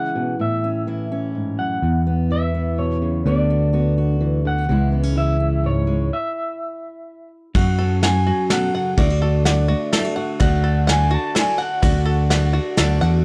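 The picked electric bass sits up front and amped, entering at 1.8 seconds to anchor this hopeful, nostalgic indie folk piece in a straight 3/4 at 126 BPM. Above it, an electric guitar through a small old amp carries the melody with a twangy, slightly broken-up tone and harmonic tremolo, over a dark, fingerpicked steel-string acoustic guitar whose finger squeaks come through. The chords move from A through E5, Bm/D and C#m before the band stops at 6.1 seconds. At 7.5 seconds the arrangement builds: a percussive banjo played with fingerpicks adds arpeggios, and a soft brushed kit joins with a punchy kick, a medium-tuned snare and dark ride cymbal in a roomy small-room sound, as the harmony turns to F#m and D. Near the end a bright, boxy twelve-string acoustic guitar adds a shimmering, octave-doubled layer, all in a close, dry mix that is cut from a longer piece.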